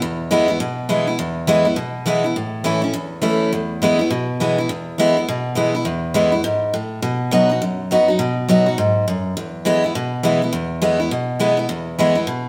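Swinging eighth notes at a brisk 206 BPM in 4/4 drive this upbeat, retro rock clip in E major, where a bright, full-bodied picked steel-string acoustic guitar with fresh strings plays solo and up front from 0.0 to 12.5 seconds, ranging from E2 to F#4 over a progression of E, A, E, B and back to E, all bathed in the wet reverb of a stone room as if the band were playing live together.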